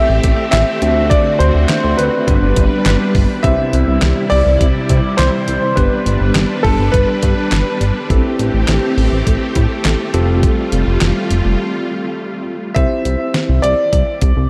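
A bright, upbeat synth-pop passage at 103 BPM opens with an intimate concert grand piano carrying the melody through analog delay, a bell-like tine electric piano comping beneath it, and vintage string-machine violas holding sustained chords with ensemble chorus. A glossy, retro pulse-and-sawtooth synth bass sits up front, while a clean 12-bit drum machine adds a thumpy kick, fat snare, hi-hat and handclaps. Everything floats in a dreamy, reverb-soaked mix; the strings drop out at 12.7 s just as the piano melody returns over a closing C chord.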